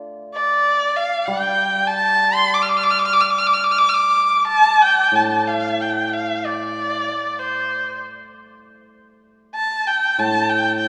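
A warm, up-front solo erhu carries a graceful, wistful melody from 0.3 s in this rubato Chinese traditional chamber piece, its bowed line full of expressive vibrato and portamento, while a softer hammered dulcimer joins at 1.3 s with shimmering, ringing low accompaniment, both bathed in the long, wet reverb of a church or concert hall, all cut from a longer piece.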